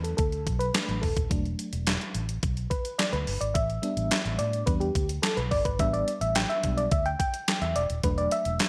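A thumpy drum machine, a round muted bass and a warbling FM electric piano all start together at 0.0 s in this slick, late-night piece of early-eighties boogie funk, cut from a longer track and moving at 107 BPM in a straight 4/4 in E minor. The electric piano carries the lead throughout, its tremolo-shimmering tone striking quickly and then decaying, with a noise layer and a dusky vintage character placed up front. Beneath it, the foam-muted fingered bass sits low, amped and punchy with a dark edge. The clean 12-bit drum machine, also up front, brings handclaps, hi-hat, a medium-tuned snare and a thumpy kick, all overdriven, given a gated reverb and the sense of a large room. The harmony moves from E9sus4 to A9sus4 at 3.6 s and returns to E9sus4 at 8.0 s, all framed by bright 1980s-style digital production with a light reverb and digital ambience.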